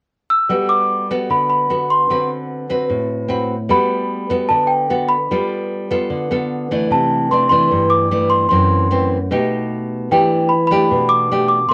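Bossa nova in G major at 150 BPM, romantic and sunny, this excerpt from a longer piece sets a bell-like, delicate celesta melody with bright, hard felt-hammer strikes and a cassette-tape tint against fingerpicked nylon-string guitar accompaniment that sits up front with a deep classical, acoustic warmth. The celesta enters at 0.3 seconds and the guitar at 0.5 seconds, moving through lush chords such as Gmaj9, D6, C69, F#m7b5 and Baug7 before settling on Em7. The home cassette recording has a moderate studio reverb and is tuned to A4 = 442 Hz.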